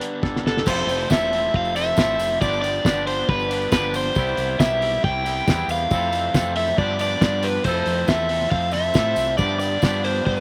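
Jangly and upbeat, this indie rock excerpt moves at 137 BPM in a straight 4/4, built on F lydian chords that shift among Fmaj7, G7 and Cmaj7. An overdriven semi-hollow guitar carries the melody up front with a hollow-body bite, while a second overdriven electric guitar and a clean, twangy electric guitar play riffs in the background, both touched with slapback echo. The cloth-damped drum kit sounds thuddy and muffled, with a fat snare, tight kick, dark cymbals and a gritty, saturated edge, and a short drum fill leads in from 0.2 seconds. A growling fingered electric bass enters at 0.2 seconds with punchy overdrive, and a jingly tambourine sits distant in the background from 0.7 seconds. Near the end, at 8.3 seconds, a very quiet phased string machine adds swirling, vintage sustained chords, all heard in a dry, close sound with little reverb.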